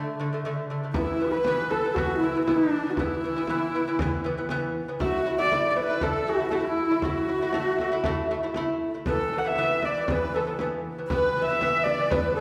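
A straight, even 4/4 pulse drives this proud, galloping excerpt of Mongolian folk music. A dark, husky horsehead fiddle carries the melody up front, its bowed horsehair strings sounding intimate and close with light vibrato, portamento and an airy, soft-attacked bow. Beneath it, a fingerpicked lute with gut double strings, some doubled at the octave, plays delicate arpeggios from the very start. The frame drum enters at 0.9 s, its close, dry tone sitting low in the mix, and a bright large dizi follows at 1.0 s with a second line, its bamboo body and buzzing membrane giving an airy, bright edge and expressive vibrato. The harmony moves from D5 to E5, rises to A5 and settles back on E5, all framed by the wet reverb of a recital hall.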